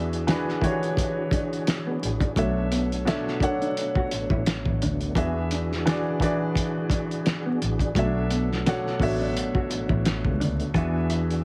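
Heavily compressed into a radio-like sound with vinyl crackle and light reverb, this introspective, late-night R&B and neo-soul excerpt at 86 BPM in B dorian moves on a swung 16th-note feel over E9 and Bm11, with a cloth-damped, thuddy drum kit with a fat snare and a smooth, woody upright piano up front, a bowed double bass with vibrato sounding distant, and a dark, fingered electric guitar with lush chorus and a round, percussive tonewheel organ with fast rotary speaker and key click sitting in the background.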